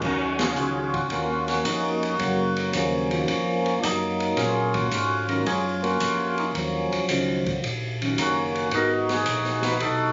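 A percussive tonewheel organ carries the melody up front, its clean tone marked by key click and second-harmonic percussion and turning through a slow rotary speaker. This smoky, bluesy soul jazz organ trio swings in 4/4, with the whole band hitting an accent at 0.3 seconds. Beneath the lead, a second tonewheel organ supplies a mellow, round bass line coloured by chorus vibrato and its own slow rotary speaker. A vintage hollow-body electric guitar adds dark, picked accompaniment until 9.6 seconds. An acoustic jazz kit in a small room fills out the groove with dark cymbals across ride, hi-hat and crash, a high-tuned snare and a boomy kick. The harmony sits on Ebm9 before moving to Abm9 at 8.7 seconds, all heard through light reverb in a muffled, phone-in-the-room capture of a passage cut from a longer piece.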